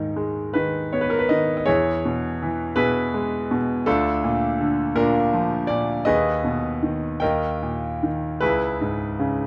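A solo grand piano opens this brief classical fragment on a G# minor chord, setting a melancholic, reflective tone in a slow, lyrical 6/8 at roughly 50-56 beats per minute, counted in dotted quarters. The playing breathes with rubato, and the harmony moves from G# minor through E, A#/D and G#m/D# before reaching D# at 7.2 seconds and settling on C# minor at 8.4 seconds. The piano itself sounds bright, brilliant and open, with a short sustain, and it sits up front, spanning C#2 to G5. Around it, light reverb and a dark production frame that crisp tone. The passage lasts 9.5 seconds and is cut from a longer piece.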